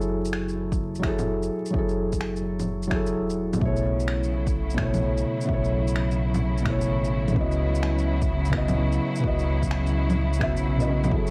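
A swung sixteenth-note groove in 4/4 drives this ghostly, wistful future garage fragment: a soft, felt-muted upright piano sits up front with tape echo and sidechain pumping over a round, deep sub bass with tube saturation, an overdriven layer of electronic shaker, finger snaps and bongos runs throughout, a punchy electronic kick joins at 0.7 s, and lush bowed symphonic strings with vibrato enter at 3.6 s as the harmony moves through F#m9, B9sus4 and C#m11 under light reverb, cassette home-recording character and vinyl crackle.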